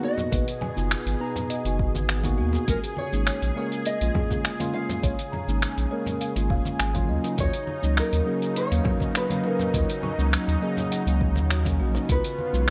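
Wistful and warm, this sunset chillout excerpt moves at 102 BPM in a straight 4/4, drifting through G#m9, A#m7, D#m7 and C#7. A dark, fingerpicked nylon-string guitar carries the melody over a mellow tine electric piano touched with delay. Beneath them, a lush, thick sawtooth unison pad warbles with chorus and a slow attack. A round sine sub bass sits up front from 0.3 seconds alongside a deep, layered electronic kick with a tape-warm character, while a gritty, compressed sampler-style soul kit adds cabasa, finger snaps and hi-hat. Bright, hard-handed bongos and congas stay in the background, as does a woody, buzzing kalimba that rings through airy arpeggios with its own delay, all set in light reverb and a digital ambience.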